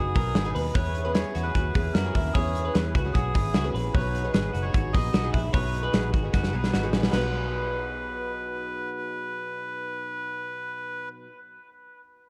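A cassette-tape haze and an echo-heavy mix with light small-room reverb give this bright, youthful fragment of jangly indie pop its lo-fi character, played at 150 BPM in 4/4 with a straight feel in B major, tuned to A4 = 438 Hz. A reedy, breathy, nasal melodica carries the melody through dub echo. Beneath it, a boxy, shimmering, octave-doubled twelve-string acoustic archtop supplies picked accompaniment, and a clean, twangy, compressed twelve-string electric guitar spins arpeggios, both also soaked in dub echo. A dark, round, foam-muted fingered bass anchors the low end, while an up-front modern kit with a tight kick, a medium-tuned snare, hi-hat and crash enters at 0.2 seconds in a pumping small room and rolls into a fill at 6.3 seconds. The harmony moves between B6 and E6. Once the passage moves into its second section at 7.1 seconds, the drums drop away, and the electric guitar stops at 8.3 seconds.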